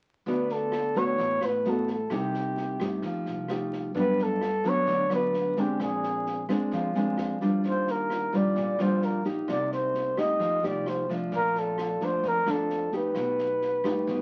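A breezy, romantic bossa nova at 130 BPM features a breathy, mellow flugelhorn up front, its scooped notes and light vibrato carrying the melody over thumb-plucked, warm nylon-string guitar chords moving from D6 through Cm7, Gmaj7 and Ebmaj9 to a closing B7b13. Pizzicato upright bass sits woody and low in the background, while a dark, acoustic jazz kit adds rim clicks, snare and a boomy kick in a small room. The whole fragment, cut from a longer piece, sounds like a very old 78 rpm record, with vinyl crackle, a muffled top end and moderate studio reverb.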